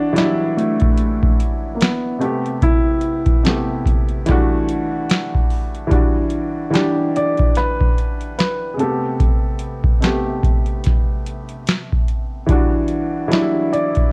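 Two upright pianos open this reflective, hazy lo-fi hip hop excerpt in E minor at 73 BPM: a dark, mellow one carries the melody through low-pass filtering, analog delay and plate reverb, and a woody, up-front one plays cassette-tinged accompaniment over Em9, Am9 and Em11 chords. A booming analog drum machine enters at 0.2 seconds with a deep kick, crisp snare and metallic hi-hats swung on the 16ths, and the whole recording carries a light reverb, cassette tape colouring and lossy compression artefacts.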